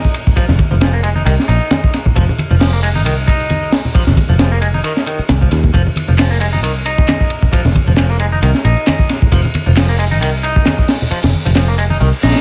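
A small room gives this gritty, raw breakbeat cut its character, as it rolls at 134 BPM in F minor with a 55% swing on the sixteenths. Up front, a crunchy acoustic breakbeat kit drives the groove with a punchy kick, a high-tuned snare, hi-hat and dark ride cymbal, its saturated tone rolled off at the top. A round, foam-muted picked bass sits just as far forward, its direct signal thickened by tube saturation as it holds the low end. A clean, twangy electric guitar picks a bright riff through tape echo, while a layered electronic garage kit adds handclaps and hi-hat from 0.1 seconds. Low-tuned congas with a thin skin stay close and dry in the background, and a reverse cymbal enters at 12.2 seconds at the very end of this piece cut from a longer track.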